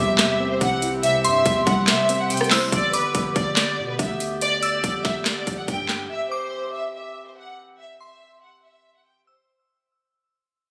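This is a brief cut from a longer hip hop track in a half-time trap feel at 142 BPM, where an overdriven, up-front trap kit with a hard-clipped kick, sharp snare, metallic hats, handclaps and rim clicks runs from 0.2 to 6.0 seconds, with the kick dropping out between 1.9 and 2.7 seconds. Underneath, a deep, sine-toned 808-style bass with long decaying notes sits in the background until 6.1 seconds. The mood is dreamy yet triumphant: a lush, bowed symphonic violin section carries the melody up front with vibrato and delay, while a crystalline FM synth bell adds a high second line treated with chorus and delay. A dark, boxy concert grand piano with audible action noise accompanies only through the opening 2.7 seconds, and a distant, roomy woodwind section holds sustained chords throughout. The harmony moves from C to G at 2.7 seconds, where a fade-out begins, returning to C at 6.1 seconds. 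The sound has a light studio reverb and compression, and it was captured on a phone recording made in the room.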